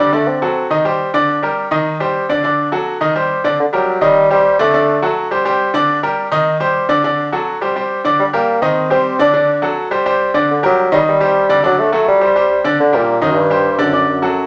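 A mellow bassoon in a classical style carries the melody up front, its light vibrato and smooth top floating over a danceable, driving Latin groove that moves in a brisk four. A bright baby grand piano plays accompaniment throughout with a brilliant, polished tone and short sustain, while the bassoon drops in and out, returning at 8.2 seconds for a longer phrase. The pair sit in a large studio with moderate reverb, and minor-key chords cycle around a recurring progression in this cut from a longer piece.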